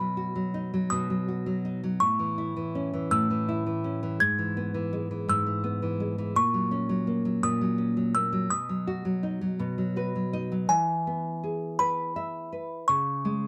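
In a 6/8 at 55 beats per minute, this sleepy, innocent children's lullaby in E major pairs a delicate, tinkling music box melody, bright and slightly out of tune, with a warm, full-bodied fingerpicked nylon-string guitar accompaniment that sits up front, adds a brief fill at 9.6 seconds and leads into a new section at 10.7 seconds, all within a dry, close 1970s-style studio sound touched by light reverb in this fragment of a longer piece.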